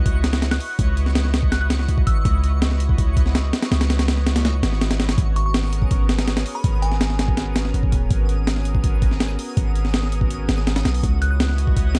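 Frenetic and raw, this drum and bass and jungle excerpt at 164 BPM in G# minor drives a gritty, compressed breakbeat sampler-style kit with a thumpy kick and high-tuned snare up front alongside a deep, mellow sine 808-style bass, while a lush, detuned unison pad with chorus and vintage 12-bit sampler grit sustains C#m11 and G#m11 chords, a glassy FM synth bell with dub echo drifts in the background from 0.5 s, a sparkling granular texture twinkles high above, and vinyl crackle hangs over the whole room.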